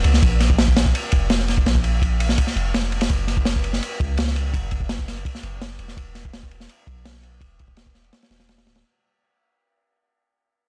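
A straight 4/4 drum and bass groove with a jungle edge drives this short cut from a longer piece, its crunchy breakbeat kit of kick drum, snare drum and ride cymbal running for the full 8.8 seconds. The kit sounds acoustic and played in a studio room, sitting up front and mid-forward with a tight kick, a medium-tuned snare and dark cymbals, all pushed into saturated, gritty territory with a rolled-off top. Beneath it, a long sustained 808-style bass holds the low end from D1 to Db2, its deep sine tone striking with a fast attack before decaying in a mellow way. The mood is frenetic and raw, and the sound stays dry with little reverb and a dull upper edge. The whole passage fades out across its length, and the tuning sits slightly below standard pitch.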